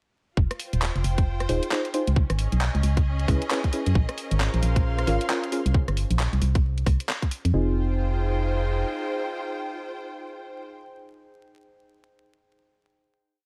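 UK garage in a two-step style, this short, moody and bouncy piece rides a swung 134 BPM groove in F minor, with an up-front, hollow organ-like FM bass riff and a tight, overdriven two-step kick joined by a skipping garage kit of claps, hats and rim clicks, while a clear studio string section pumps softly underneath through Fm7, Dbm7 and Bbm7. Deep, nasal chord stabs with chorus and delay enter at 1.5 seconds, an airy breathy pad arrives at 4.2 seconds, and a brief breathy flute-like lead sounds a single background note. The drums stop at 7.5 seconds, and the bass carries on until 8.8 seconds as strings, stabs and pad hold a final Fm7 chord over vinyl crackle and light digital ambience.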